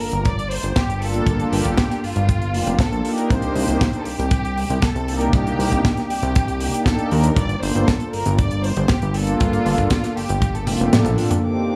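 Cosmic and sleek, this nu-disco excerpt moves at 118 BPM in a straight 4/4, set in G minor and cycling from Gm9 to Cm9 and back. A fat, thick analog bass with a detuned sawtooth tone and a plucky filtered attack sits up front, breathing with sidechain pumping, while a polished, tight kick drives the groove. A dry, airy funk kit adds hi-hat, a medium-tuned snare and toms, all softened by low-pass filtering, and a smooth, chorused analog pad drifts in at 1.0 seconds with tape echo and its own pumping motion. Above it, a lush studio violin section carries the melody with vibrato, sounding distant and focused through an analog delay. A drum fill arrives at 10.7 seconds, the kick drops away as the band hits an accent at 10.9, and a clear chamber violin section enters at 11.4 seconds with sustained bowed chords in a small, echo-heavy room.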